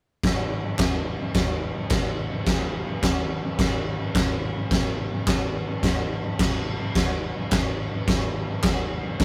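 Raw and swaggering, this rock excerpt at 107 BPM in a straight 4/4 is driven by an oversized, low-tuned acoustic drum kit sitting up front, its boomy kick, fat snare and crash cymbal made gritty by saturation in a big, pumping room sound, while a crisp group handclap enters at 0.8 seconds in the background with a small-room feel, all captured as a rough rehearsal-room recording with light reverb and warm saturation.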